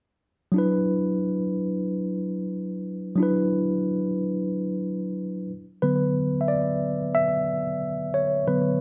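A worn, slightly out-of-tune tine electric piano plays alone in this short soul fragment, sitting close and up front with a slapback echo and a touch of light reverb. The mood is smooth and romantic, at 91 BPM in straight 4/4 in D major, with the piano ranging from D3 to E5 over a lingering D6/9 chord. The harmony drops out briefly at 5.5 seconds, and the D6/9 returns at 5.8 seconds as the piano moves into a new section.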